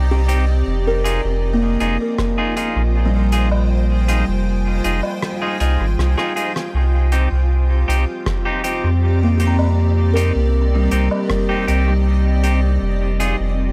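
An echo-heavy mix with light reverb sets this deep, meditative ambient dub fragment in F dorian at 79 BPM, where a blurred, evolving granular cloud pad holds sustained Cm and Fm7 chords over a round, up-front sine sub bass. A buzzing kalimba with a woody, hollow tone spins mellow arpeggios through tape echo, while a bright, twangy clean electric guitar drops stabs into dub echo. A soft-mallet drum kit with a big-room sound ticks hi-hat, rim click and woodblock through the same dub echo, and a deep analog electronic kick thuds briefly at 2.2 s, then returns from 8.3 to 11.5 s after a short drum fill.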